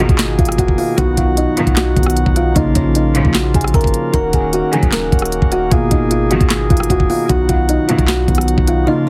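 Heavily compressed with a radio-like sheen and light reverb, this brooding, eerie half-time trap excerpt at 152 BPM sets a woody, thumb-plucked kalimba melody over a dark, boxy grand piano tucked in the background, nasal cornet-stop chamber organ chords with chiff, and distant bowed string stabs with vibrato that stop at 8.1 seconds; underneath sit a deep, boomy sine 808 bass and an up-front electronic trap kit of knocking kick, sharp snare, crisp hats, handclaps and rim clicks that is muted at 8.9 seconds, while the harmony cycles through Abmadd9, B, Bbm and Ebm7.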